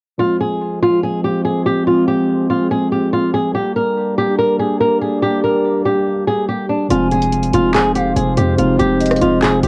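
An up-front, fingerpicked flamenco guitar with audible finger squeak carries a melancholic, brooding melody over a mellow, lushly chorused tine electric piano and a distant, roomy brass ensemble holding sustained chords, each filtered through cassette-tape haze, until at 6.9 s this trap hip hop excerpt settles into a half-time groove with a punchy, heavy 808-style bass, an overdriven trap kit of handclaps, hi-hat and rim click, and a smooth gliding portamento lead with tape echo sitting in the background.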